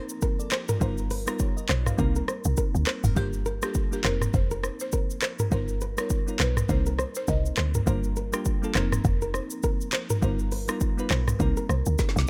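Afrobeats in G minor at 102 BPM, this smooth, mellow cut from a longer piece rides a swung sixteenth-note groove in 4/4. An electronic, produced afro-pop drum kit sits up front, with a deep kick, woody snare, crisp hats, rim click, shaker, handclaps and toms, and it closes on a drum fill at 12.0 seconds. Beside it, a punchy log drum bass with a fast attack and quick decay gives the low end a percussive, wooden thump. A sparkling, bell-like FM electric piano with chorus plays the accompaniment through F7sus4, G7alt, Cm7 and Gm7 chords, while a fingerpicked flamenco guitar, its finger squeak audible, repeats a short acoustic riff through digital delay. From 3.2 to 7.7 seconds a dry, buzzing marimba on hardwood bars adds a soft melody, also through delay, and the whole mix sounds dry with little room reverb.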